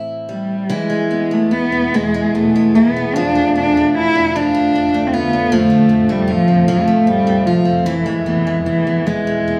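Celtic folk in the manner of a slow air, this short excerpt moves in a rubato 6/8 at about 50 BPM, carrying a longing, mournful mood. A picked steel-string acoustic guitar opens at 0.0 s with a boxy, parlour-sized tone, sitting up front as accompaniment. A dark, woody cello carries the melody from 0.3 s, a single bowed player with vibrato whose sound is up front yet slightly distant. At 1.7 s a granular cloud pad enters underneath with slow-attack sustained chords, its detuned, blurred and evolving texture carrying its own built-in reverb. The harmony moves from Am7 to E, then through Dm/F and F before returning to E, all within a moderate recital hall reverb that lends the trio a gentle sense of space.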